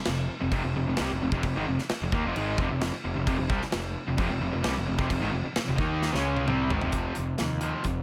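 A straight, driving hard rock beat in 4/4 propels this aggressive cut from a longer piece, with a big, up-front acoustic drum kit of bright cymbals, boomy kick, snare, hi-hat and toms under a fuzzy, upfront picked bass, while three background guitars (a bright overdriven semi-hollow, a tight distorted one and a double-tracked raw garage part that drops out at 6.9 s) churn out the riff in light studio reverb until a drum fill at 6.0 s pushes into a power-chord close.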